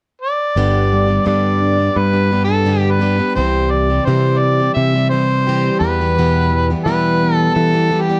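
Rock with a jangly, nostalgic mood, this short excerpt moves at a steady, straight four-beat pulse. An overdriven, amplified harmonica opens alone at 0.2 s and carries the melody up front, its gritty tone colored by light vibrato and percussive tongue slaps in a pop-style solo. At 0.6 s the band joins: a plugged-in dreadnought steel-string acoustic guitar picks a full-bodied accompaniment with audible finger squeak, while a mellow, clean electric guitar plays a fingered riff in the background, shaded by analog chorus. A punchy, direct-and-amped picked electric bass anchors the low end. The harmony moves from G to C to Em, and the dark, warm production sits in a small room with light reverb.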